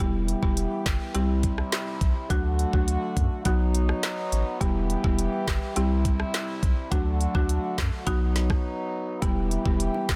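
A produced electronic drum kit sits up front in this tough, bouncy dancehall excerpt, its knocking kick and woody snare joined by smooth hi-hats, rim clicks and handclaps at 104 BPM in a straight 4/4. Beneath it, a deep, round sine sub bass holds the low end with a fast attack and long sustain. A buzzing marimba played with medium mallets adds dry, airy accompaniment over hardwood bars, while a distant, roomy French horn section in a classical style holds sustained chords; both of these parts pump against the sidechain. The harmony in E minor cycles through Em, C, D and B, with a short break at 8.6 seconds before very quiet, low-tuned acoustic bongos slip in at 9.2 seconds as the progression returns to Em. Light reverb and a dense, heavily limited modern master give the whole a tight, loud finish.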